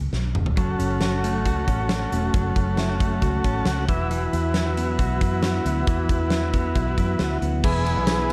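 A buzzy combo organ with heavy vibrato sits up front in this wistful, restless stretch of jangly indie pop, adding a brief fill from 3.2 to 4.1 seconds as the chords move from F#m to Esus2. A clean, compressed electric guitar picks arpeggios through spring reverb and digital delay, while a round, foam-muted fingered bass and a big rock drum kit with a fat snare and tight kick hold the bottom after an opening drum fill. A very quiet, jingly tambourine enters at 7.6 seconds, and the production is dark with light reverb.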